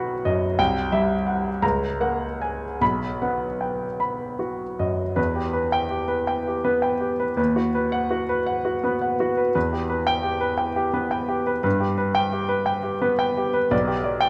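A romantic classical character piece for solo piano, this brief passage cut from a longer work carries a passionate, bittersweet mood in E minor. It moves in 6/8 at a slow 49-61 BPM counted in dotted quarters, with rubato giving the time a free, breathing feel. A baby grand piano plays alone throughout the 14.3 seconds, sounding clear and natural with short sustain, placed up front and ranging from B1 to B5. The opening section hovers around B major, C and F#/C# harmony before settling back on B, and at 5.2 seconds a second section turns to E minor, passing through B/D# and E minor again before moving to G and ending on G/B. A moderate concert hall reverb, lasting about 2.4 seconds, surrounds the instrument with a sense of space.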